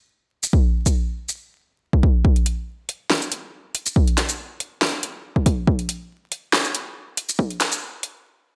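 A light reverb and a layer of vinyl crackle sit over this short, high-passed cut from a longer dubstep track, which moves at 140 BPM in 4/4 with a half-time feel and a slight swing on the sixteenths. The mood is brooding and heavy, carried entirely by up-front, overdriven electronic drums. A deep house kit of hi-hat, shaker and snare enters at 0.4 seconds, where the snare lands fat and the hats ring metallic, each thinned by its own high-pass filter, and a punchy, layered kick joins it at 0.5 seconds. From 2.2 seconds a build-up takes hold under a filter sweep, raising the tension until the music breaks off in a stop at 8.2 seconds.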